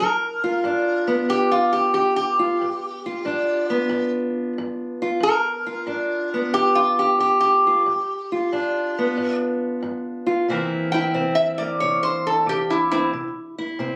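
Acoustic country blues with a soulful, laid-back swing, cut from a longer piece, pairing a lap resonator guitar carrying the melody with a fingerpicked steel-string acoustic guitar in accompaniment. The resonator, played with slide and fingerpicks, has a metallic, nasal edge and sits up front until 13.3 seconds, while the dark, boxy parlour guitar underpins it over a G7 that shifts to C7 at 10.5 seconds. A phone recording from the room, it carries moderate studio reverb and compression.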